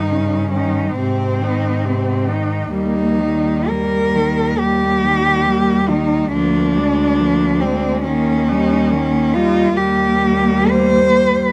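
This brief classical fragment opens with four bowed cellos sounding together, a lyrical ensemble moving at 69 BPM in 4/4 with a flexible, rubato feel and tuning set slightly low at A4 = 437 Hz. Up front, the melody cello sings between C4 and C5 with a soft attack, vibrato and expressive portamento, its tone warm and intimate. Behind it, a second cello traces a gentle inner line from G3 to Eb4, sounding more distant and sliding with the same tender vibrato. Below, a rich accompaniment cello plays smooth, even tones from C3 to Ab3, while the focused bass cello anchors the texture from D2 to Ab2. The harmony settles around E-flat, passing through Eb7/G, Ab, Eb and Bb7/D before returning to Eb at 8.1 seconds. Close, detailed microphones and a light touch of reverb keep each bow stroke present across the 11.5 seconds.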